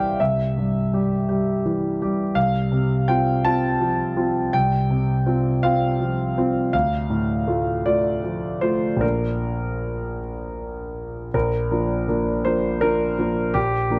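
Neoclassical minimalist piano in Bb major, this intimate, hopeful fragment from a longer piece moves at a slow, rubato 51-56 BPM in 6/8. A solo concert grand carries everything, its clear, slightly worn tone sitting up front with deep bass, long sustain and little reverb as it ranges from Bb1 to A5. The harmony drifts through C, F/C and Dm before settling on Bb at 9.0 seconds, and a new section opens at 11.3 seconds.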